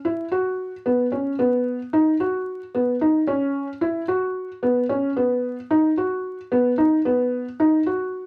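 In a straight 7/8 pulse counted at 223 BPM in eighths, this tense, intricate progressive instrumental fragment, cut from a longer piece, features a solo felt-muted upright piano from 0.0 to 8.3 s, moving between B3 and F#4 with a soft, intimate tone, short sustain and audible action noise, placed up front in a moderate studio ambience with a layer of vinyl crackle.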